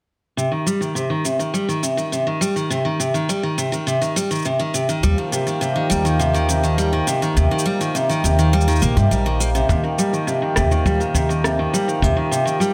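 Delicate and warm, this folktronica excerpt in Eb major moves at 103 BPM in a straight 4/4, opening with bright, full-bodied picked steel-string acoustic guitar arpeggios, heard through a low-pass filter and digital delay, over a produced electronic shaker and rim click; a reedy, breathing pedal harmonium and a woody, thumpy pizzicato upright bass on gut strings join at 5.0 seconds, a dry, punchy acoustic kick drum arrives at 9.7 seconds, and the mix sits in a moderate echo-chamber reverb with small room ambience.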